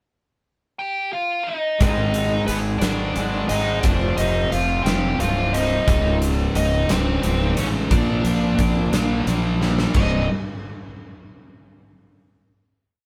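This is a brooding, dark quiet-loud alternative rock piece in a 6/8 groove, built as a short pickup leading into a pre-chorus and a final held chord. A nasal lead guitar with a parked wah opens at 0.8 seconds and stays up front, its overdriven, motif-based melody phrased in sentence-like statements and partly doubled in octaves. At 1.8 seconds the band arrives as if playing live in one room: a huge arena drum kit with a boomy kick, bright cymbals and a pumping hall sound, and a growly, punchy fuzz bass driving eighth notes up front. Behind them, a distorted electric guitar pushes compressed power chords, while a twangy, slightly broken-up guitar through a small old amp strums chords with spring reverb until 5.9 seconds, when a thick, darker fuzz guitar takes over with its own driving power chords. A drum fill launches the ending, a held Csus2 chord that closes the piece.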